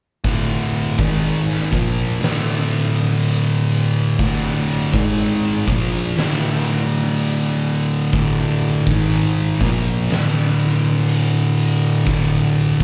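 From 0.2 s, a double-tracked, fuzz-drenched electric guitar sits up front, picking a riff around a D5 chord, while an oversized, low-tuned acoustic drum kit lays down kick, snare and hi-hat. This ominous, sludgy stoner and doom metal excerpt is heard as a live gig through the venue's PA, with club reverb and small-room ambience. The drums carry a fat snare and punchy kick in a bright, pumping stone room, and both parts stop at 12.8 s.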